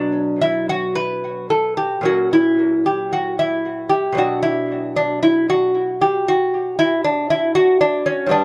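Rubato and flowing at around 55-59 BPM in 4/4, this short fragment of a grave, baroque-style classical dance in B minor features a solo lute, fingerpicked on gut double strings with some octave-doubled courses. Its delicate tone sits up front, treated with tape echo and captured by close, detailed microphones in a dry room, and the harmony moves from B5 through F#/A# to settle on Bm at 4.2 seconds.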